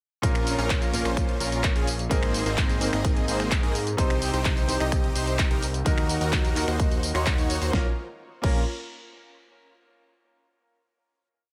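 Anthemic and powerful, this short festival progressive house piece in Bb minor drives at 128 BPM in a straight 4/4, launching straight into a drop at 0.2 seconds that runs until a final Bbm chord arrives at 7.7 seconds. A punchy, up-front electronic kick hammers four-on-the-floor beneath a layered big-room kit whose huge snare, claps, finger snaps, tambourine, closed and open hi-hats and crash cymbal supply a programmed backbeat. Lush, detuned supersaw chords carry the riff in a dotted rhythm, moving through Bbm, Abadd9, Cm and Ebm with sidechain pumping and tape echo. A fat, thick analog bass with a wave-folded sawtooth-and-triangle tone and a filter sweep locks to the chord rhythm, also pumping against the kick. In the background, a brilliant, intimate baby grand piano with audible action noise holds close-voiced chords with syncopated pushes and long sustain, its sound treated with tape echo and sidechain pumping, all set in light reverb and digital ambience.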